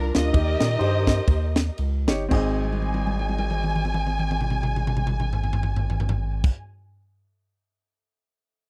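Soulful and hopeful, this brief uptempo gospel excerpt in Ab major swings at 109-137 BPM as a smooth, expressive string section with vibrato and portamento carries the melody over an intimate, woody upright piano and a round, deep analog bass, while a crisp fusion drum kit with a punchy kick, high-tuned snare and dark cymbals slows with the band through the opening 2.3 seconds before a drum fill runs from 2.6 to 6.4 seconds, all captured in a dry, close 1970s-style studio sound.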